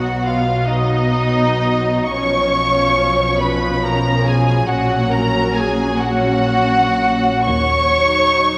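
This classical slow movement for string orchestra has a serene, warm mood, unfolding at roughly 39-47 BPM in dotted quarters in 6/8 with a free, rubato feel in F# major. Muted violins carry the melody up front, their con sordino tone veiled and lush with vibrato and soft attacks, while a second violin line sits beneath, dark and veiled. Violas supply the accompaniment with a smooth top, cellos hold the bass close yet in the background, and the distant, symphonic double basses add the lowest support. All five sections play together through the 8.6-second excerpt, which is cut from a longer piece and moves through B, C#7/B, F#/A# and D#m. A wet concert hall reverb with a 2.5-second decay surrounds the ensemble with a generous sense of space.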